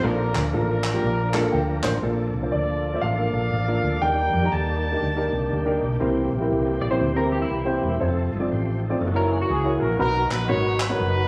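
A swung four-beat groove drives this reverent, hopeful uptempo gospel excerpt, where a round, dark hollow-body bass and an intimate baby grand piano carry the accompaniment under a gritty, overdriven tonewheel organ with fast rotary speaker in the background, while an up-front horn section states the melody, crisp group handclaps punctuate the opening, a very quiet, mellow French horn section holds chords from 2.0 s, a clear concert grand piano with slapback echo joins the melody from 2.5 s, and a clean semi-hollow guitar with analog chorus adds a second line from 6.8 s, all in a roomy echo chamber.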